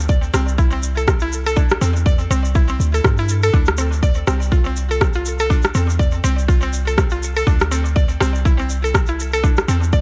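Afro house at 122 BPM in D minor, driving and warm, with a swung sixteenth-note feel, cut from a longer piece. A punchy, layered electronic kick sits up front over a deep, boomy 808-style bass that pumps against the sidechain, while a tape-warm electronic rim click and a grainy egg shaker with tape echo fill out the groove. A woody, round mallet-like synth pluck carries the arpeggios with chorus, tape echo and its own sidechain pumping, moving between a rootless Am and a third-less D7 in an echo-heavy mix with light reverb.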